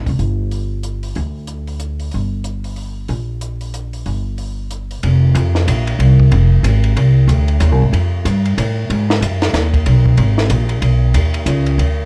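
The recording has the worn, warbling character of old cassette tape, with a drifting pitch and a light reverb around the players. This short cut from a longer modal jazz piece moves in a swung three-four with an intense yet cool mood. The upright bass sits up front, plucked on steel strings with a woody, growly tone that transformer saturation thickens further. Behind it, a compact cocktail drum kit played in a small room sounds dark and smooth, pairing a high-tuned snare and punchy kick with hi-hat and ride cymbal. The bass opens the cut at 0.0 s, the drums join almost immediately, and a second section begins at 5.0 s before the excerpt breaks off.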